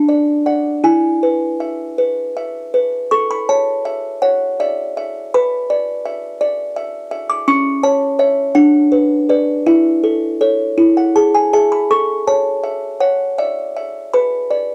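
Moving gently in a straight 6/8, this dreamy, innocent classical lullaby, cut from a longer piece, features a solo music box, delicate, tinkling and slightly out of tune, sitting up front in a boxy small room with light reverb and the soft wear of a home cassette recording, its plucked tones unfolding over simple chord changes until the harmony falls away at 14.1 seconds.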